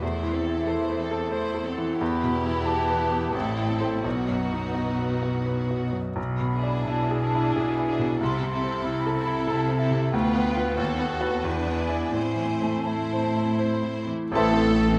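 A bright, up-front grand piano carries a tragic, passionate melody in a rubato triple metre, joined on the melody by a clear violin section, while hollow flutes and a softer second violin section trace second lines over lush violas and focused cellos in a romantic movement for piano and orchestra. The harmony moves through A minor over a moderate stage reverb, with audible action noise and long sustain giving the piano an intimate presence. At 14.3 s the full orchestra arrives just as this excerpt is cut off: a punchy oboe and a very quiet clarinet on second lines, a background French horn section and a tight, dark trombone section on sustained chords, a brief bassoon, very quiet trumpet stabs, and double basses with a distant tuba on the bass.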